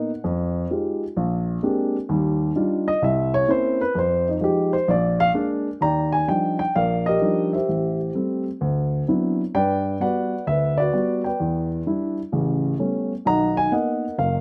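Solo jazz with a relaxed, swinging feel, cut from a longer piece, played on a lone baby grand piano whose dark, mellow tone sits up front, with audible action noise lending it intimacy. Extended chords such as Fm9, Bb13 and Ebmaj9 colour the opening section, and at 5.8 seconds a second section begins, moving through Am7, D13 and Gmaj7 to Bmaj7. The sound is natural and dry, recorded in the open air with little reverb.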